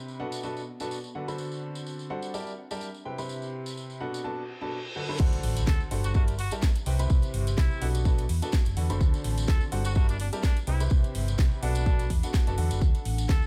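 Piano house at 126 BPM in D mixolydian, uplifting and joyful, where a woody, smooth upright piano riff with tape echo and sidechain pumping sits over a warbling, lo-fi background pad and a vintage tambourine, until a reverse cymbal and impact at 4.4 seconds usher in a drop at 5.2 seconds with a punchy, up-front electronic kick, a house kit of cracking snare, metallic hats and crash, a dark, round hollow-body electric bass, and a clear trumpet melody with light vibrato and tape echo arriving at 5.7 seconds.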